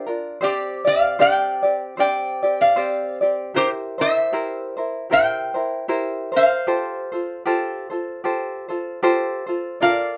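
A small room's moderate reverb gives this live, in-one-room take an intimate, close feel, with both instruments sitting up front. It is a relaxed, dreamy Hawaiian piece in F major at 76 BPM in 4/4, with a gentle swing on the eighth notes, cut from a longer work. A metal-body resonator slide guitar carries the melody between G4 and G5, its bright, nasal, metallic tone shaped by slide and fingerpicks. Underneath, a tenor ukulele fingerpicks a light, warm accompaniment from C4 to D5, both parts playing throughout the roughly ten seconds. The harmony moves from Gsus4 to C7 at 3.5 seconds and settles on Fadd9 at 6.7 seconds.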